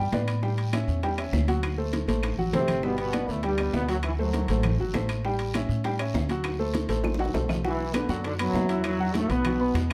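Salsa with a sunny, danceable lift, this short excerpt cut from a longer piece opens with a clear, present grand piano comping up front over a thumpy, gut-strung upright bass played pizzicato. A bed of Latin percussion fills in behind them: bright, high-tuned congas, round low-tuned bongos, a raspy guiro, woody claves set back in the mix, and ringing metal-shell timbales heard close and dry. A drum fill around 1.9 seconds leads into the first entry of a brilliant, tight trombone section with light vibrato, which carries the melody until 4.8 seconds. The harmony cycles through dominant sevenths with a Gmaj7 along the way, and a second fill heralds the trombones' return at 7.6 seconds as the music shifts onto a Bm chord for a new section. The dark production is wrapped in a moderate studio reverb.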